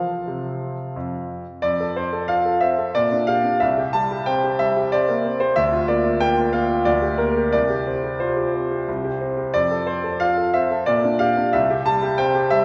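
A clear, up-front grand piano opens this short fragment of a classical-period sonatina, playing alone in a cheerful, graceful triple metre with a gently rubato feel. Its open tone and long sustain span from deep bass to the upper treble, moving through simple, elegant harmonies that settle back home at 9.5 seconds before turning onward again. A wet church reverb surrounds the instrument, giving it the spacious resonance of a large hall.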